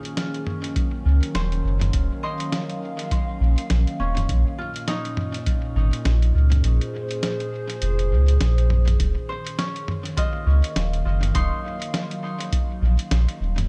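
A loping 4/4 groove at 102 BPM, swung at 58% on the sixteenths, carries this meditative, spacious ambient dub excerpt in Eb dorian. A muffled, pitched-down, sampler-style kit of hi-hat, medium-tuned snare and toms arrives at 0.1 seconds, overdriven and compressed, with studio reverb and dub echo. A deep analog electronic kick joins at 0.8 seconds with its own reverb, then drops out between 6.6 and 9.0 seconds. Underneath, a round, sine-like sub bass with tube saturation sits up front, sustaining mellow low notes. A warbling, nostalgic pad, built from detuned square and triangle tones with ring modulation, chorus and its own reverb, holds slow-blooming chords through Ebm7, Bbm7 and back to Ebm7. Over it, a fingerpicked Celtic harp rings out acoustic arpeggios trailed by tape echo, while the overall mix stays fairly dry.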